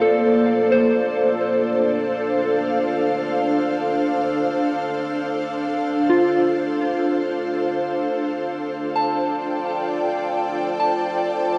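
Bathed in a wet cathedral reverb, this weightless, serene ambient excerpt in free time sets an ethereal, airy pad of detuned sawtooth with a sub octave and slow attack, mellow and up front in ensemble chorus, holding sustained chords from Bbmaj9 through Dm7 to F69 at 8.2 seconds, while a soft, pure FM synth bell with a warbling vintage tone traces decaying arpeggios through chorus and tape echo.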